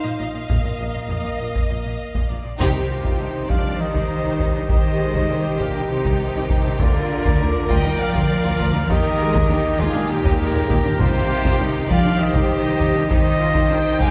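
Epic orchestral film score in C minor, dramatic and heroic, driving at 200 BPM in an uneven 7/8 and cut from a longer piece, with lush, vibrato-rich violins carrying the melody over a second violin line, intense violas, and rich bowed cellos and double basses, while mellow French horns hold sustained chords in the background. Close, dry taiko struck with hard sticks push the pulse from 0.5 seconds, and soft-attacked trumpets add stabs from 2.6 seconds, where the whole band hits an accent as the harmony moves from Bbsus4 to C minor. A very quiet timpani note with calf heads sounds briefly at 11.0 seconds, and the orchestra sits back in a reverberant concert hall.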